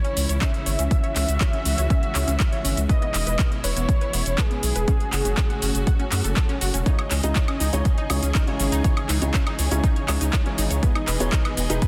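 A dense, heavily limited mix with light digital ambience carries this dreamy, expansive progressive house excerpt in C# minor at 121 BPM, where an up-front overdriven kick and metallic-hatted deep house kit with handclaps, shaker and woodblock play alongside a thick saturated sub bass, while dark bowed strings and a lush detuned sawtooth pluck arpeggio pump under sidechain, a bold gritty unison lead sings its delayed melody until 6.8 seconds, and a soft felt-muted upright piano with audible action noise enters with stabs from 6.9 seconds.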